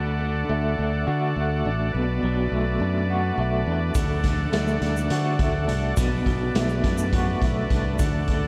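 A twangy, slightly broken-up electric guitar through a small old amp drives this mysterious, hypnotic psychedelic rock excerpt with a tremolo-washed riff in 7/8 at 208 BPM, over a growly, up-front fingered bass and reedy combo organ chords with light vibrato, moving between D and Bm7. At 3.9 seconds a raw, saturated garage drum kit with a punchy kick and rolled-off top joins alongside a grainy tube shaker sitting in the background. The whole mix is dreamy and soaked in a huge ambient reverb.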